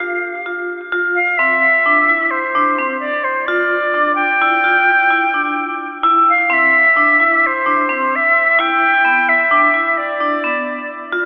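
Progressive instrumental music in an odd 11/8 metre, this excerpt from a longer piece moves at 259 BPM counted in eighths with a straight feel, sounding intricate and driving. A reedy silver concert flute carries the melody from the start, its airy, crisp tone sitting up front with vibrato and a tape echo, and it stops at 10.9 seconds. Beneath it, a vibraphone played with hard mallets spins arpeggios through to 11.3 seconds, metallic and ringing with a fast motor vibrato and a vintage, band-limited character, also treated with tape echo. The harmony opens before any chord is established, then moves through F5, G5, C and Em7 chords. The whole mix is soaked in a cathedral reverb with a 4.4-second decay and filtered to a telephone-like sound, giving it a dreamy haze. The tuning sits slightly sharp at A4 = 443 Hz.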